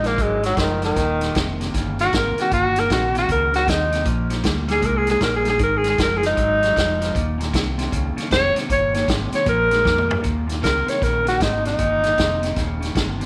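Electric blues shuffle with a laid-back, rollicking swing, where a soft-attacked, jazz-styled tenor saxophone solos up front over a bright, twangy, slightly broken-up guitar riff, a dark, round, foam-muted bass and an acoustic drum kit with a punchy kick, whose fill at 9.9 seconds leads back into the form, all set in a small room with echo-chamber reverb in this section cut from a longer piece.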